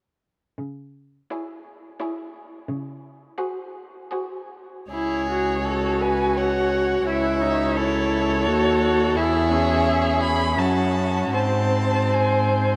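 A bowed cello opens at 0.6 s, rich and up front with smooth vibrato, before the other three players enter together at 1.3 s in this elegiac, melancholic slow romantic movement for string quartet in C# minor, moving in a rubato 3/4 at 70-89 BPM. A distant first violin carries the melody with expressive vibrato and portamento above an even second violin line, while the viola's focused, close tone fills in the accompaniment over the cello's bass. The quartet sounds as though heard in a vast cathedral, its long, wet reverb lending the mournful harmonies a haunting spaciousness.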